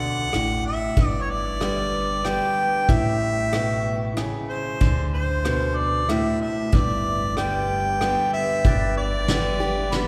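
Drenched in the long, wet reverb of a church or concert hall, this easygoing, nostalgic honky-tonk and classic country tune in 3/4 is cut from a longer piece. An up-front, warm harmonica carries the melody over a bright, boxy picked archtop guitar with audible finger squeak, a woody, thumpy pizzicato upright bass on gut strings, and a distant, roomy brush kit with a fat snare and punchy kick that joins at 0.3 seconds. At 8.7 seconds a clean, twangy pedal steel guitar slides in softly in the background with sustained chords.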